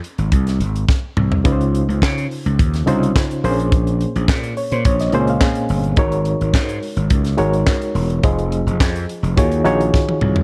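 Driving and sultry, this disco excerpt cut from a longer piece opens on a tight funk kit with a high-tuned snare, handclaps and toms, joined at 0.2 seconds by a growly, overdriven slap bass and at 1.4 seconds by a barky reed electric piano with fast tremolo that takes a fill around 4.3 seconds, as chords move from Fm through Dbmaj9, Bbm9, Ab7sus4 and Fm7 to Ebm11 in a dark, up-front small-room mix.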